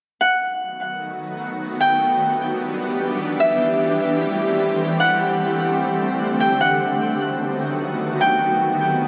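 A ringing, fingerpicked Celtic harp melody opens at 0.2 s in this hazy, melancholic hip hop piece in free time, joined at 0.9 s by an up-front, ethereal pad whose sustained chords shimmer with chorus and a granular octave-up glow through B7, Em7, Am7 and D7sus4, while the harp's diffuse ambient delay and a long plate reverb soak the mix in a dreamy wash.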